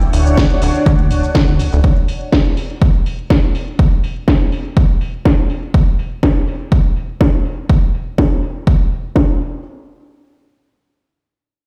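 A lush, vintage string machine opens this funky, nostalgic slice of filtered disco house, holding a Dmaj7 chord with a slow attack, ensemble chorus and a mellow low-pass tone, while a plucky analog bass sits beneath with sawtooth and square-wave bite and a fast, decaying filter pluck. Both breathe with sidechain pumping at 123 BPM in a straight 4/4. The overdriven electronic kick enters at 0.4 seconds, punchy and up front. The strings and bass stop at 1.8 seconds, and the kick joins the layered house kit of metallic hats, shaker and a cracking snare to carry the groove under a filter sweep until 9.6 seconds. The drums sound re-recorded through a big sound system in a bare stone room, giving the track a gritty, reverberant club character.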